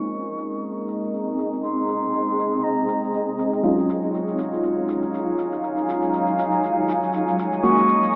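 A silver concert flute carries the melody up front, its airy, vibrato-laden tone floating in a dub echo before falling away at 3.4 seconds and returning briefly near the close. This is a smooth, moody deep house fragment, cut from a longer piece, with a swung 4/4 feel. Beneath the flute, an airy, breathy pad holds sustained chords with a bright, chorused shimmer, while a granular cloud pad adds a dark, blurred, evolving texture bathed in its own reverb. A mellow FM electric piano sits in the background with soft, round, decaying stabs colored by chorus and phaser, and a grainy shekere ticks quietly close and dry. At 7.6 seconds a muted violin section slips in with a veiled, con sordino sheen over the Ebm11 chord, the harmony having moved there from Bbm11 at 3.6 seconds. A filter sweep runs throughout, and the whole mix sits in a plate reverb with a low-passed, small-speaker character.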